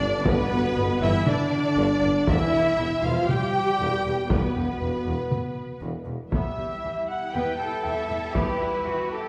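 A heroic, relentless cinematic orchestral cue opens on a lush bowed string body, with two violin sections carrying the melody and a second line over an expressive viola section with portamento, rich cellos and woody double basses, framed by dark French horns, mellow close-miked trombones and a roomy tuba. Hard-stick taiko drums with a vintage, band-limited sound drive the 4/4 pulse from 0.3 seconds as the chords move from G to Em at 2.3 seconds, before a dark, soft-edged solo trumpet adds stabs from 6.3 seconds, all set back in a wet scoring-stage reverb.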